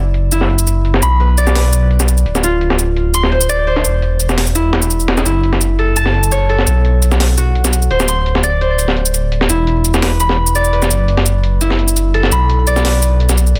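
This lush, rolling liquid drum and bass passage, cut from a longer piece, opens at 0.0 seconds with a fingerpicked concert harp and a dark detuned saw bass sounding together at 170 BPM in a straight 4/4. The acoustic harp sits up front, its ringing arpeggios running between E4 and C6 through a low-pass filter and a delay. Beneath it, the bass rumbles deep from D1 to B1, a beating unison of detuned sawtooth with a sine layer, fast in attack, sustained and also placed up front. A breakbeat sampler-style kit of hi-hat and medium-tuned snare joins at 0.1 seconds, with filtered hats and a soft-clipped, filtered snare, while an electronic cabasa and hi-hat part adds its own compressed, pitched-up, gritty sampled texture from 0.3 seconds. The harmony moves from Esus2/F# through Bm, Dm7 and a brief chordless stretch to F#m7, B5, Csus2/D and E5 before returning to F#m7 and Bm. All of it is set in a digital ambience and a dense, heavily limited modern master.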